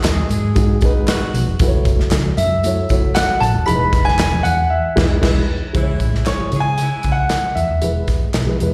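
Joyful and danceable, this short cut from an uptempo 1960s-style soul number moves at 116 BPM in a straight 4/4, heard as a live gig through the venue's PA with recital hall reverb around a small room. An up-front acoustic drum kit with a punchy kick, medium-tuned snare and dark cymbals drives it alongside a round, hollow-body fingered electric bass, while soft-handed, high-tuned congas sit very quietly beneath, and background handclaps, tambourine and tube shaker carry a slapback echo. A dark, woody upright piano with short sustain comps through the changes from G#m7 to F#m7 and Emaj7, and a tight, close-miked saxophone section adds a second line at the start and again from 5.0 seconds. At 2.4 seconds a brilliant baby grand piano takes the melody with long sustain, joined for a while by a bell-like glockenspiel playing a second line that rings in the background. A band accent at 4.7 seconds leads into a new section at 5.7 seconds, where the harmony moves to C#m and then E.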